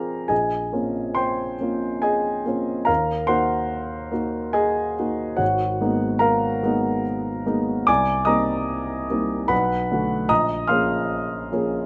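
A clear grand piano plays alone in this hazy, mysterious impressionist classical excerpt, its polished, up-front tone carrying long sustain across a range from Ab1 to F6. The music moves in a rubato 3/4 at around 69-76 BPM, drifting through a chain of dusky minor harmonies from Bbm9 and Ebm6 to Abm9, Cm7, Bm7 and Bbm7. A moderate stone-room reverb lends the solo a resonant, shadowy space over its 11.9 seconds.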